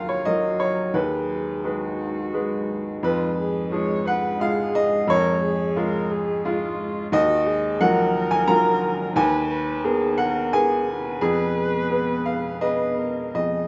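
Wet studio reverb and a rough home-demo mix frame this reflective, melancholic neoclassical piece for piano and strings, cut from a longer work, at 88 BPM in a rubato 3/4 tuned to A4 = 437 Hz, where a clear, woody upright piano with long sustain sits up front, a single muted viola adds veiled, lightly vibratoed bowed accompaniment alongside it, and a deep, detuned sawtooth-and-sine ambient pad with chorus and its own reverb holds mellow chords in the background as the harmony moves through Ebmadd9, Abmadd9/Eb and Fdim twice over 13.7 seconds.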